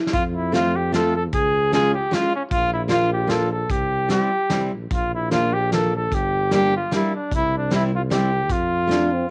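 Swung, gently rubato waltz time drives this festive, bouncy alpine folk dance excerpt, cut from a longer piece, with a clear, soft-edged vintage flugelhorn carrying the melody up front over a mellow tuba bass and a fingerpicked jumbo steel-string guitar with fresh, full-bodied strings. A loose acoustic drum kit with punchy kick, a medium-tuned snare, a rolled-off top and gritty, saturated character sits low in the mix, while a mellow euphonium with light vibrato sounds its second line only briefly at the start and again from 8.9 seconds. The home cassette recording gives a small-room, lightly reverberant ambience.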